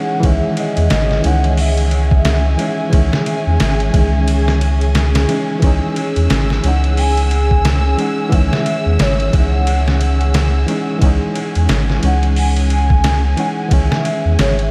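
A soft, round dub sub bass sits up front and anchors this dark, brooding trip hop fragment, entering at 0.2 seconds alongside a gritty, pitched-down sampler-style drum kit with a thumpy kick, a medium-tuned snare, hi-hat and ride cymbal, compressed and re-recorded in a small room. The groove carries a loose sixteenth-note swing, and the kick briefly drops out between 4.3 and 5.6 seconds. Beneath it, a reedy, worn electric piano plays slightly out of tune through its built-in speakers, shimmering with tremolo and tape echo. A distant, woody violin section holds lush sustained chords, bowed sul tasto with vibrato, over a C#madd9 harmony. Floating above, a pure, breathy sine lead with a soft attack sings the melody through analog chorus and tape echo, and the whole dreamy mix is soaked in a huge ambient reverb and dusted with vinyl crackle.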